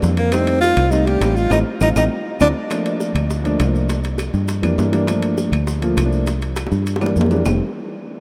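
Bathed in a huge, echoing reverb, this lively, sunny Afro-Cuban jazz excerpt at 202 BPM sets a breathy, up-front tenor saxophone with vibrato and scooped notes, heard only until 2.5 seconds, over a punchy fingered electric bass, a dark, mellow baby grand piano with audible action noise, very quiet high-tuned bongos, ringing metal-shell timbales, woody claves and grainy maracas, with a band accent and drum fill at 1.5 seconds and another fill at 6.6 seconds.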